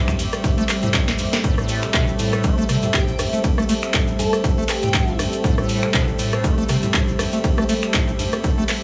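A punchy, up-front electronic kick and a booming analog drum machine with crisp snare, metallic hats, finger snaps, handclaps, ride and rim clicks drive this swung acid house groove, with a short drum fill at 1.1 seconds and a grainy cabasa sitting in the background. A squelchy, resonant square-wave acid bass riff with a filter sweep, tube saturation, chorus and delay churns under a thick, detuned unison pad and a cloudy, evolving granular pad, both breathing with sidechain pumping. From 2.9 to 5.2 seconds an airy, dreamy lead floats in with vibrato and portamento, adding to the driving, trippy feel of this cut from a longer piece.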